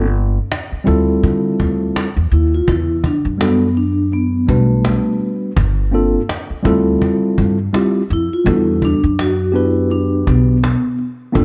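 Cool and mellow, this dark, dry jazz-hop excerpt from a longer piece moves at 83 BPM with a 16th-note swing, as a clean tine electric piano and a thumpy, up-front pizzicato upright bass on gut strings lay down Dm11, Em11 and Gm11 chords, a woody cajon with faint snares joins at 0.2 seconds, and a close-miked vibraphone played with soft mallets enters at 2.3 seconds to carry the ringing, metallic melody with a medium motor vibrato.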